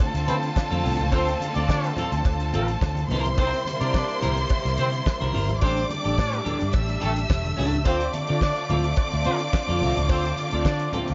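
Glamorous and danceable, this short disco excerpt in D minor moves at a straight 107 BPM, with a damped, fat-snared 70s drum kit with handclaps and a round, foam-muted fingered bass up front, a clean semi-hollow guitar shimmering with lush chorus, a bowed string section holding clear sustained chords beneath a rich, vibrato-laden violin line, distant horn stabs, low-tuned congas and a very quiet metallic cowbell, all in a light studio ambience over Dm7, C7 and A7sus4 harmony.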